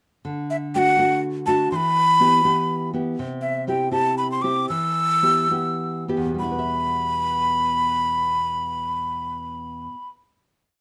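A large quena carries the melody up front, its end-blown wooden tone breathy and reedy, with a crisp, chiffy attack and a straight, close-miked sound as it spins short motifs into balanced phrases. This is a complete short Andean folk piece in 6/8, festive and earthy in mood. Underneath, a classical nylon-string guitar, also up front, is fingerpicked with a warm tone, laying down bass notes and chord figures that keep the pulse, with an occasional finger squeak. The harmony moves from D to E minor to C and back to E minor, and the music slows down between 3.2 and 6.4 seconds. From 6.4 seconds the piece settles on a final chord that the guitar holds until 10.3 seconds, all within a light reverb.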